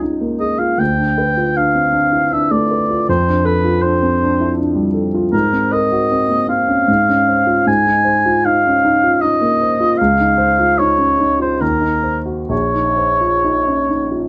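Close, detailed microphones and a light reverb give this short passage, cut from a longer piece, an intimate and clear sound. It is an impressionist classical duo for oboe and grand piano in 3/4, moving with a rubato feel between 63 and 82 BPM, tuned to A4 = 441 Hz, and its mood is wistful and hazy. The dark, smooth grand piano opens the accompaniment at 0.0 seconds with a vintage character, ranging from Bb1 to C5 and sitting up front. The oboe enters with the melody at 0.4 seconds, mellow and roomy with a light vibrato, singing in a classical style between Bb4 and Ab5. Colourful extended harmonies drift from Db69 through Dm6, F69, Ab9 and Dbmaj9 before settling on Ebm6 and Bbmadd9 as both parts close at 14.3 seconds.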